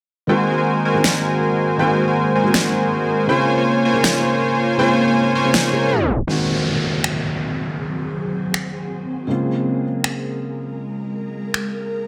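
Set in moderate lush hall reverb, this euphoric future bass excerpt at 160 BPM in a half-time feel pairs a fat, detuned sawtooth polysynth riff, filter-swept until a tape stop closing at 6.3 seconds, with a mellow felt-muted upright piano carrying audible action noise and huge layered electronic snaps and snare, before a downlifter ushers in an ethereal, airy pad with phaser and ensemble chorus over chords moving between Ab7 and Bbm7.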